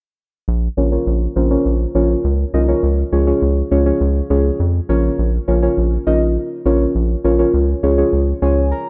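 Melancholic yet driving, this short synth-pop excerpt moves at 102 BPM in a straight 4/4, set in Bb minor and cut from a longer piece. A round analog bass enters at 0.5 seconds, deep and dark, with a fast-attack filter pluck and sustained notes sitting up front in the low register. Muted, felt-like synth keys join at 0.8 seconds, soft and intimate yet full-bodied, with a sub octave beneath them and a noise layer, coloured by chorus and a low-pass filter. A filter sweep shapes the keys through the opening passage until 5.2 seconds, when the music moves into a second section, and the keys close with a short fill from 8.1 seconds. The harmony alternates between Bb minor and Db, and a lush hall reverb gives the whole a spacious digital ambience.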